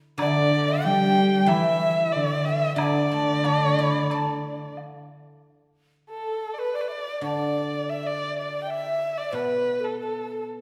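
From 0.2 seconds, a Chinese chamber ensemble opens this graceful, pastoral piece in the D zhi mode, at 92 BPM in 4/4 with a rubato feel. A warm, up-front erhu carries the melody with vibrato and portamento, and a breathy bamboo xiao plays a second line in the background, while a ringing, silvery guzheng accompanies with fingerpicks. A smooth, boxy bowed cello and a very quiet woodblock drop out by about 4.9 seconds, and the erhu, xiao and guzheng carry on into a new section from 5.4 seconds, all heard from further back in a reverberant recital hall.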